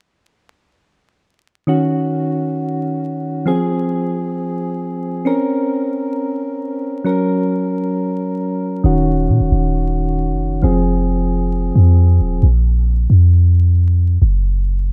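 A half-time 4/4 groove at 134 BPM sets a dark, melancholic hip hop mood in Bb minor in this short cut from a longer piece. Soft, round electric-piano-like synth keys with chorus, tremolo and a low-pass filter sweep enter at 1.7 seconds, moving through Ebm7, Fm, Bbmadd9 and Gb. A deep, boomy 808-style sine bass arrives at 8.8 seconds and carries on alone after the keys stop at 12.4 seconds, all in a dry, up-front sound with vinyl crackle.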